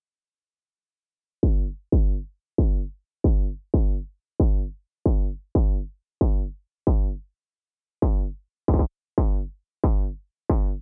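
A distorted, overdriven electronic kick drum enters at 1.4 seconds and sits up front, carrying this melancholic, cerebral IDM fragment in a straight 4/4. A filter sweep runs through the passage from 1.1 to 10.8 seconds, and the dry, low-pass-filtered sound keeps the piece close and muffled until the kick stops at 10.6 seconds.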